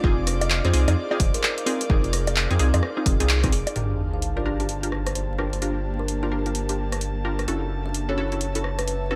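A swung two-step garage groove in 4/4 drives this late-night, moody UK garage excerpt. A punchy, tape-toned electronic kick thumps until 3.5 seconds, while an up-front analog drum machine joins at 0.3 seconds with bongos, handclaps, hi-hat and rim click. Beneath it sits a thick, saturated sub bass, and a detuned sawtooth chord stab with chorus and digital delay punches through the Fm7, Gm7 and F#m7 changes. A woody, dark kalimba rings out the melody over two background pads: an airy, breathy one with chorus and sidechain pumping, and a cloudy, evolving granular one with built-in reverb that also pumps. A sub drop rumbles in the background from 3.8 to 5.6 seconds, and the whole recording carries a light reverb and a layer of vinyl crackle.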